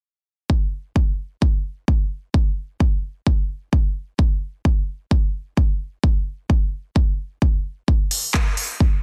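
A punchy, layered electronic kick drum sits up front from 0.5 s to 8.9 s in this swaggering, gritty bass house clip at 130 BPM in 4/4 with 56% swing on the 16ths, joined briefly at 8.1 s by a produced house kit of handclaps and crisp hi-hats, the pair set in digital ambience under a dense, heavily limited modern master.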